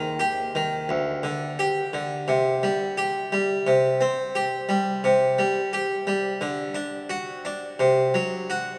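In a rubato 4/4 at about 87 BPM, this introspective, solemn baroque-style suite movement in C minor, cut from a longer piece, features a solo Italian-style harpsichord, plucked and full-bodied with two sets of strings, heard up front and ranging from D2 to G4 for its 8.8 seconds, all set within a drenched cathedral reverb that lingers for 6.4 seconds.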